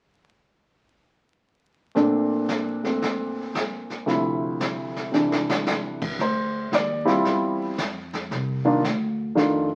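This is a jazz piano trio in D minor, moody and smoky, swinging at 113 BPM in 4/4. It is cut from a longer piece. A baby grand piano carries the melody from 1.9 seconds, sitting up front with a natural tone and short sustain. It moves through Bbmaj9, Dm9, Dm11 and Csus2 harmonies. A brushed acoustic drum kit plays under it in a small room, with dark cymbals, a medium-tuned snare, a boomy kick and hi-hat, and adds a drum fill at 5.1 seconds. At 6.2 seconds a woody, thumpy upright bass joins with warm pizzicato on steel strings, moving the tune into a new section. The whole track has the crackle of a very old 78 rpm record, with a moderate studio reverb.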